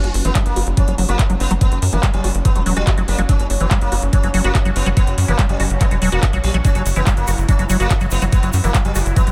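Psychedelic trance at 143 BPM, intense and alien, with a buzzing, shimmering sitar melody colored by phaser and delay over a tight, punchy sequencer bass, a knocking electronic kick up front, a metallic-hatted kit with handclaps, a squelchy liquid acid bass riff under a filter sweep from 0.2 seconds, a bubbling stepped-filter chord texture in the background, a very quiet warbling lo-fi pad from 2.3 seconds, and a grainy egg shaker joining at 6.6 seconds.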